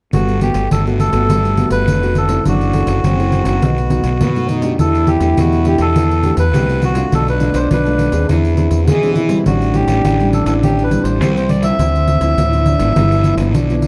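From the opening moment, a festive, joyful samba-choro groove in G major starts up all at once at 103 BPM in a straight 4/4. A reedy, nasal melodica carries the melody above a breathy, whispered trombone that plays a soft-attacked second line with light vibrato, set distant and roomy in a jazz style. Beneath them, a fingerpicked nylon-string guitar with old strings gives a woody, full-bodied classical accompaniment from the background. A jingly pandeiro played with hard hands sits close, while an overdriven fuzz electric bass sits punchy and up front as the loudest part. The harmony moves from Gmaj9 through F#m7b5, B7, Em7, Bm7b5 and E7b13 to Am7 and Dm9, landing on G6, all bathed in a wet large-studio reverb within a dark, warm production. The melodica drops out at 13.4 seconds, and the rest of the band plays on until the cut at 13.9 seconds.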